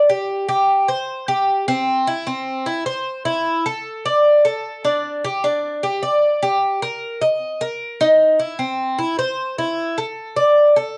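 This Latin fragment, cut from a longer piece, features a Cuban tres playing solo from 0.0 to 11.0 seconds at a danceable 152 BPM in a straight 4/4. The mood is warm. The acoustic tres is picked, and its doubled strings, some of them octave-doubled, give it a bright, metallic ring as it moves between C4 and Eb5. It sits up front in a small room with moderate reverb, and it carries the cassette-tape character of a home recording. The tuning sits slightly sharp, at A4 = 441 Hz.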